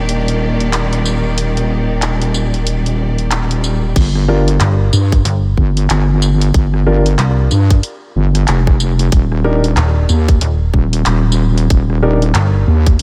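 A light reverb and digital ambience frame this swaggering, funky glitch hop cut from a longer piece, moving at 93 BPM in 4/4 with a 60% swing on the sixteenths in G minor. It opens over an Ebmaj7 chord, with a clear, focused studio string section holding bowed, vibrato-rich chords roughened by vintage 12-bit sampler grit and sidechain pumping. A dark, intimate grand piano adds smooth stabs with audible action noise, pumping and delay. Beneath them a heavy, mellow wobble bass built from square and sine tones sits up front with chorus, while a layered, produced drum kit brings crash cymbal, handclaps, hi-hat, rim click and tambourine. A very quiet electronic swell builds into the drop at 4.0 seconds, where a tight, up-front electronic kick enters and the harmony shifts to G7(no3), later settling on Eb. A snappy, metallic FM slap-style bass joins at 4.6 seconds, its decaying digital notes adding bite to the groove.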